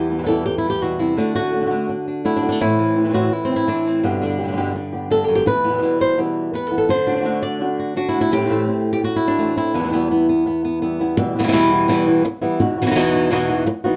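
Dramatic and passionate, this flamenco excerpt moves at 168 BPM in E minor with two fingerpicked acoustic flamenco guitars, one bright with fresh strings carrying the melody up front while a darker one supplies stabs with audible finger squeak, both playing throughout over a progression that circles from Em through D, Am and G before settling on B/E near 12.6 seconds, all set in a dark production with moderate studio reverb.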